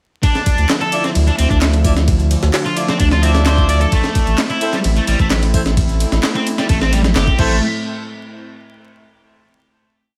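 A swaggering, gritty breakbeat piece in A minor at 130 BPM opens at 0.2 s on a compressed, pitched-up sampled break with a thumpy kick and tape-warm grit, a faint machine layer of closed hats and claps, and a bright, double-tracked fuzz guitar riff running a 32-step sequence through 12-bit sampler crunch and digital delay. A warbling, nostalgic lo-fi pad with chorus and sidechain pumping enters at 0.4 s. A deep, saturated sub bass follows at 0.6 s with a dub-style line up front, and then distant, mellow horn stabs echo sparsely through delay over Dmadd9 and Am chords. Vinyl crackle and light digital ambience sit over the whole drop until a final hit at 7.6 s.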